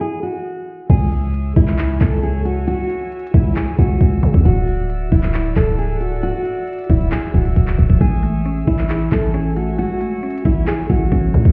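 A fingerpicked steel-string acoustic guitar opens this eerie, hard-hitting trap excerpt alone, its full-bodied melody trailed by tape echo, before an overdriven trap kit with a knocking kick, crisp hi-hats, handclaps and crash cymbal lands at 0.9 s in a half-time feel at 135 BPM, C# phrygian, tuned to A4 = 436 Hz. A growling, buzzy 808-style bass sits up front beside the drums, while a dark studio string section bowed sul tasto holds soft, floating chords high above through C#m, Dadd9 and Amaj7. A woody, mellow synth pluck with chorus joins at 8.0 s, and the whole mix sounds muffled as if heard through a wall, washed in stone-room reverb.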